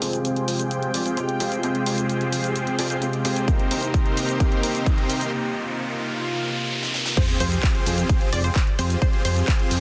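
Dense, heavily limited and lightly reverberant, this anthemic, euphoric festival progressive house excerpt at 130 BPM builds from a very quiet, mellow felt-muted upright piano with audible action noise, a lush chorused pad carrying vintage 12-bit grit, a huge detuned supersaw riff under a filter sweep, a fat analog bass and a big-room dance drum kit with a huge snare, then adds a punchy, up-front electronic kick at 3.5 seconds and a background riser and sub drop ahead of the drop at 7.2 seconds, where piano and pad stop and a short-decay unison pluck arpeggio joins the pumping supersaw and bass.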